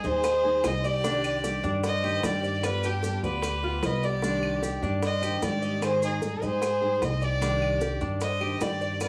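A straight 4/4 groove at 151 BPM drives this sultry, nostalgic Cuban son and guajira in C harmonic minor, where a biting, earthy solo violin with light vibrato carries the bowed melody up front over a rich chamber violin section in the background, fingerpicked flamenco guitar with fresh strings, a metallic, double-strung Cuban tres picking arpeggios, a dark, thumpy pizzicato upright bass on gut strings, tight high-tuned bongos under soft hands, woody claves and grainy maracas, wrapped in a modest small-room ambience.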